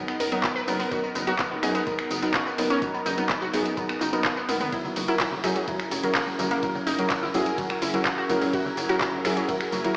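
A straight 4/4 groove at 126 BPM drives this expansive, uplifting progressive house excerpt in F# mixolydian, with an up-front pop drum kit of finger snaps, handclaps, warm hats, ride cymbal, tambourine and toms joined by a knocking, tape-toned electronic kick from 0.4 seconds. A tight, punchy sequencer bass with a sawtooth edge and ring modulation drives underneath. Compressed congas played with soft hands enter at 4.8 seconds, very quiet and saturated, just after a drum fill at 4.5 seconds. A glassy, crystalline wavetable pluck spins arpeggios with chorus, 12-bit sampler grit and dub echo, while a deep, full-bodied chord stab, detuned and dark, adds its own echoed hits. Behind them an evolving, morphing pad holds sustained chords that move from Bmaj7/F# to F#7 at 4.7 seconds, pumping with the sidechain alongside the pluck, stab and bass. The whole mix sits in a lush hall reverb, sounding like a big sound system in a bare room heard through an AM radio.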